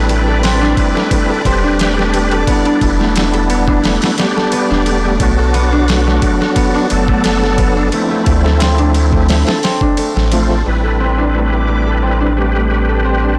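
A gritty, pitched-down boom bap sampler kit with a thumpy kick and overdrive drives this dark, cinematic trip hop excerpt in a straight four until it drops out at 10.5 seconds, while a round, deep dub sub bass with tube saturation sits up front throughout. Above it, a reedy tonewheel organ with key click, fast rotary speaker, chorus vibrato and tape echo carries a filter sweep, while a mellow concert harp rings out arpeggios through a low-pass filter and digital delay, and a reversed, granular, dreamy texture hovers in the background. At 10.7 seconds a barely audible, moody ambient pad joins, all within a blown-out, overdriven recording touched by light digital ambience.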